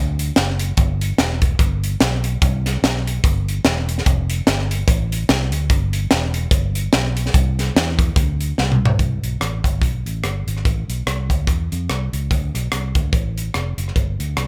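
Uptempo gospel at 146 BPM in 4/4, this cut from a longer piece swings its eighths and sits in C major with an uplifting, hopeful mood. A fingered electric bass opens at the very start, its dark, round, amped tone landing punchy low notes. The crisp fusion drum kit joins at 0.2 seconds, sitting up front with a high-tuned snare, a tight kick, rim clicks, hi-hat and toms in a small, pumping room. A drum fill at 8.6 seconds carries the groove into a new section at 9.0 seconds, and both parts play on until 14.5 seconds. Light reverb gives the pair a touch of space, with the drums standing a bit louder than the bass.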